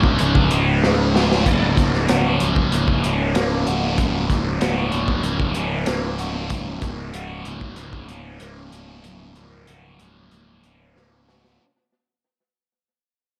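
Hazy and trippy, this psychedelic rock fragment at 95 BPM in a straight 4/4 fades out across its full 11.6 seconds, moving from Db to Gb over a Db bass at 1.5 seconds. A thick, double-tracked fuzz guitar riff with phaser sits up front beside a round, overdriven picked bass anchored on a low Db. A crunchy, gritty breakbeat kit with dark cymbals, a tight kick and tape echo drops fills at 0.8 and 11.0 seconds, all inside an echo-heavy mix with light studio reverb.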